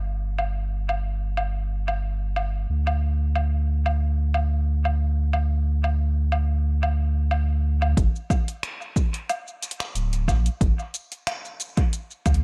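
A warm, round sub bass with a sine-like tone sits up front from the very start, its deep notes striking with a fast attack and then sustaining beneath this organic downtempo piece, heard here as an excerpt from a longer work. From 0.4 seconds an electronic Afro-pop kit of finger snaps, metallic hi-hats, shaker and woodblock plays lower in the mix, its hits trailed by dub echo. The groove carries a gentle swing on the sixteenths, giving the mystical mood an easy, unhurried sway. At 8.0 seconds a punchy, layered electronic kick joins up front, re-recorded in a small room, and adds weight to the second section. The echo-heavy digital ambience wraps the whole in a spacious, dreamlike haze.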